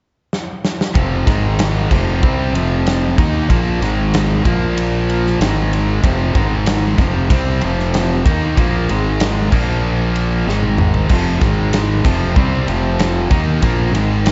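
A drum fill at 0.3 seconds opens this sunny, swaggering classic rock excerpt at 95 BPM, before two bright, picked distorted electric guitars, one compressed and up front and the other tight, join at 0.9 seconds with a riff over F5, Ab5 and Bb5, followed by a round, fuzzy fingered bass, all driven by a big acoustic kit with a punchy kick, a smooth crash and ride, a medium-tuned snare, toms and another fill at 10.5 seconds, in a small room with a dusky top end.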